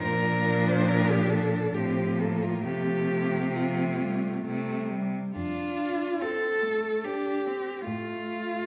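Classical lyrical music for a cello quartet in F major, serene and warm, unfolding in a rubato 3/4 at around 64-74 BPM, with a single close, vibrato-laden cello singing the melody and gliding between notes until 7.7 s, while three rich-toned cellos, two with soft attacks and expressive portamento, shape an up-front second line and bass alongside a smooth, even accompaniment, all set in the resonant bloom of a recital hall in this fragment cut from a longer piece.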